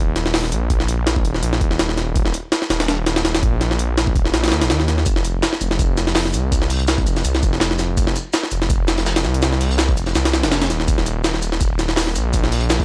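Drum and bass with a jungle edge, this dark, nostalgic excerpt runs at 165 BPM in 4/4 with a light swing on the sixteenths, a detuned sawtooth bass sitting thick, beating and menacing up front between Eb1 and Eb2, its tube saturation adding grit. A compressed, pitched-up sampler-style jungle kit with a thumpy kick and high-tuned snare drives the groove from 0.2 seconds, and at 5.1 seconds a crunchy acoustic breakbeat kit joins in the background, its high-passed hats, shaker and snare sounding smooth and rolled-off in a small room. The whole piece carries a dry, gritty hardware character with vinyl crackle.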